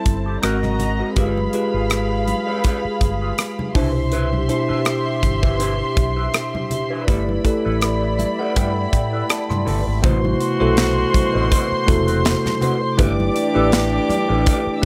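Smooth and cinematic, this lush 1970s-style soul excerpt moves at an unhurried 81 BPM with a gentle sixteenth-note swing, built on a polished, up-front drum kit with a punchy kick, a round, foam-muted fingered bass, and ringing congas tucked into the background. A bell-like tine electric piano carries the chords and takes a fill from 7.8 to 10.0 seconds, while a dark, intimate string section bowed sul tasto adds a soft second line and a slightly broken-up electric guitar plays a wah riff far back in the mix. At 10.0 seconds a tight horn section with a smooth top enters with stabs, all set in a small room ambience.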